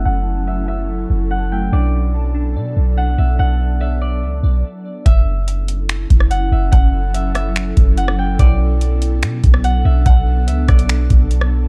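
The booming analog drum machine stands out most, arriving at 5.1 seconds with a deep kick, metallic hi-hats, finger snaps and rim clicks in a tape-warm, up-front sound that drives this melancholic, hazy cloud-rap excerpt at 144 BPM in a half-time 4/4 feel. Beneath it, a clean, sine-like 808-style bass sits up front with a fast attack and dark, boomy decay, moving between F#m7 and Bm7 chords in B minor. A mellow concert harp carries the fingerpicked, ringing melody through low-pass filtering and tape echo, while an ethereal, airy pad holds sustained chords with ensemble chorus, phaser, built-in reverb and sidechain pumping. In the opening stretch, glassy digital keys play detuned arpeggios in the background under a filter sweep, falling away at 5.1 seconds after a brief stop. The dark, warm digital ambience gives the whole excerpt a hazy, melancholic atmosphere.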